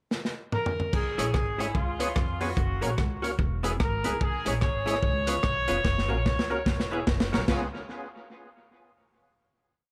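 A driving, mischievous ska piece at 146 BPM with a swung feel, opening on a short pickup bar where a crunchy breakbeat drum kit plays a fill from 0.1 seconds. The kit sits up front with a gritty, saturated character, dark cymbals, a punchy kick and a side-stick backbeat, all washed in tape echo. A horn section carries the motif-based melody in song-like phrases, sounding roomy and distant yet placed forward, while the woody pizzicato upright bass enters at 0.9 seconds with a walking line full of slides and chromatic approach notes. From 1.2 seconds a clean, hollow-body archtop guitar chops the off-beats alongside a fat, lightly overdriven tonewheel organ with key click, percussion, chorus vibrato and a slow rotary speaker. The head cycles through C#m, C#7, F# and E, another drum fill arrives at 5.8 seconds, and the piece closes on a final C#7 chord under light reverb.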